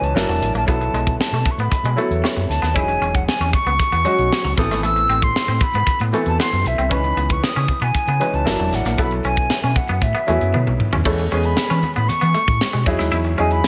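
Polished 1980s jazz-funk pop with a glossy, urban mood, moving at 116 BPM in a straight 4/4 in this short cut from a longer piece. A pure, straight-toned concert flute carries the tongued melody up top, while a clear baby grand piano with a subtle chorus and short sustain supplies the chordal accompaniment through colourful changes such as F#7alt, B7sus4, Emaj13 and C#m9. Underneath, a dark, round, overdriven fingered electric bass anchors the low end, and a tight funk drum kit sits up front with a high-tuned snare, tight kick, hi-hat, toms and crash cymbal bathed in gated reverb. A twangy, compressed electric guitar with analog chorus plays a clean fingered riff, sitting lower in the mix than the flute, piano, bass and drums. A drum fill at 10.5 seconds ushers in a new section at 11.1 seconds, where the harmony settles onto Amaj9/E and then Emaj9, and very quiet, bright, high-tuned congas join at 11.0 seconds. 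The whole mix carries a light studio reverb that keeps it sleek and polished.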